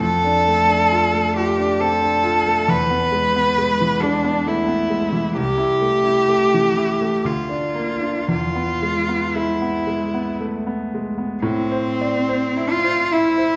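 Yearning and solemn, this romantic classical duo for cello and grand piano unfolds in A minor at a slow, flexible 55-74 BPM in 3/4, with a rubato feel that lets the phrases breathe. A single bowed cello carries the melody from the start, its rich, smooth and even tone marked by vibrato and placed close and up front. A clear concert grand piano supports it throughout, reaching down into a deep bass and offering a smooth, vintage character as accompaniment. The harmony moves from Dm/F through E and Am/C to Bb/D before returning to E, then settles on A minor at 11.4 seconds as a new section begins. The two instruments sit in a reverberant recital hall with a lingering 1.5-second decay that lends the cut-out passage a spacious, church-like glow.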